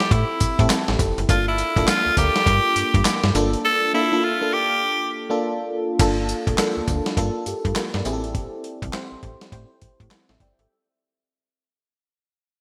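A raspy tenor saxophone with digital delay opens this punchy, slick new jack swing cut at 102 BPM, over a glassy, bell-like FM electric piano treated with chorus and phaser and a compressed, sampler-style soul drum kit with a thumpy kick, handclaps, tambourine and gated reverb, while a snappy, metallic FM bass enters at 0.1 seconds. The drums drop out from 3.6 to 6.0 seconds, and the sax solo ends at 5.1 seconds, with the groove swinging in G dorian over Am7 and Gm9 chords. From 6.0 seconds the piece fades out in a bright 1980s-style digital production with a lush hall reverb.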